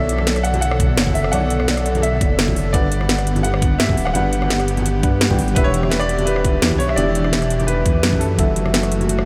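A clear concert grand piano opens this melancholic, rolling liquid drum and bass excerpt at 170 BPM in B minor, carrying the melody through a diffuse ambient delay. From the same moment, a mellow, round FM electric piano with chorus plays the accompaniment, while an airy, breathy pad sits in the background holding sustained chords, its chorus-laden tone pumping under sidechain. Underneath, a dark detuned saw bass rumbles up front with tube saturation, its unison voices beating against each other. The drum kit arrives at 0.1 seconds with a cracking snare, rim clicks and metallic hats, joined by distant congas played with soft hands in a large room, and a knocking, tape-touched electronic kick enters at 0.8 seconds. The chords move from Bm9 to Gmaj7, Em7 and F#m7, and a huge ambient reverb of 7.3 seconds soaks the whole dreamy mix.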